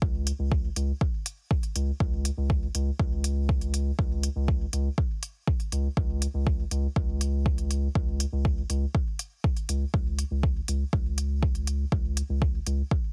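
A round analog bass anchors this dub techno excerpt. Its dark, sine-like tone sits around C#2 with a fast attack and long sustain, pumping under sidechain compression. A deep, layered electronic kick drum runs from the start to 13.0 seconds, up front in the mix, and smooth electronic hi-hats enter at 0.3 seconds. The groove holds at 121 BPM in a straight 4/4 through a single section, and the mood is cavernous and hypnotic. All three parts sit up front in a dry mix with little reverb, squeezed into a heavily compressed, radio-like sound, and the passage is cut from a longer piece.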